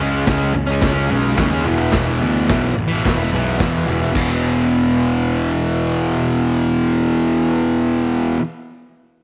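This short excerpt has a raw, gritty small-room sound with light reverb, a rowdy slice of garage rock at 109 BPM in a straight 4/4, set in E major. Up front, a bright, double-tracked fuzz guitar drives a distorted, picked riff between E2 and C#4 for the full 8.4 seconds, its tone compressed. Beneath it, a picked electric bass with overdrive and fuzz holds the low end from E1 to E2, sounding warm, direct and amped. A vintage acoustic kit sits in the background with dark cymbals, a tight kick, a medium-tuned snare and toms, its saturated, rolled-off top giving it a warm, gritty edge before it drops out at 4.3 seconds. The harmony moves from C#5 to E5 at 1.6 seconds, and the passage shifts into a new section at 4.1 seconds, leaving guitar and bass to carry the noise to the cut.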